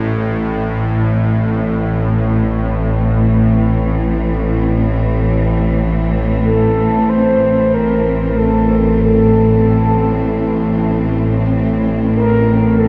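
A dark ambient drone opens on a low, sawtooth-edged bowed-like drone with a detuned, string-like tension and its own reverb, beneath a woody cello section holding sustained chords with vibrato. At 6.4 seconds a mellow, horn-like synth lead enters with a round, warbling vintage tone, carrying a melody through chorus and a diffuse ambient delay. The music sits in a wet cathedral reverb that makes this cut from a longer piece feel desolate and cavernous.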